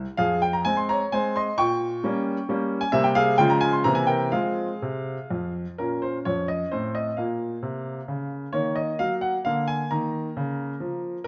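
A rubato 3/4 pulse at 131 BPM carries this elegant, dramatic fragment of a classical-period piano sonatina, opening in F minor and turning to B-flat minor at 5.8 s. A single grand piano, clear and open with long sustain, plays solo from F2 to Db6 and sits up front. Close, detailed microphones catch its tone within a moderate recital-hall reverb.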